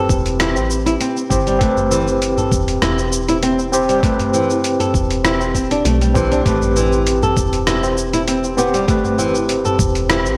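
Organic downtempo at 99 BPM in A minor with a lightly swung sixteenth feel, this hypnotic, mystical piece cut from a longer work rests on a single Am7 chord, with an up-front, gritty overdriven tine electric piano pulsing through tremolo, sidechain pumping and digital delay, dark fingerpicked flamenco guitar arpeggios softened by a low-pass filter and delay, a woody, round FM bass ducking under the pumping, a thumpy overdriven electronic kick and a dusty sampler-style kit of cabasa, hi-hat and rim click with gated reverb, and low-tuned ringing tabla in the background, all set in a lush hall reverb with bright 1980s-style digital production.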